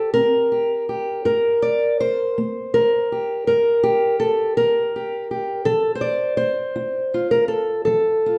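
Folk fingerstyle in a loose, rubato 6/8, this brief fragment of a longer piece carries a reflective, haunting mood. A lone fingerpicked, ladder-braced acoustic guitar with old strings sounds dark, woody and boxy as it moves from C5 to Gm and then settles on F at 5.7 seconds. A large studio reverb bathes the guitar in a wet, roomy space.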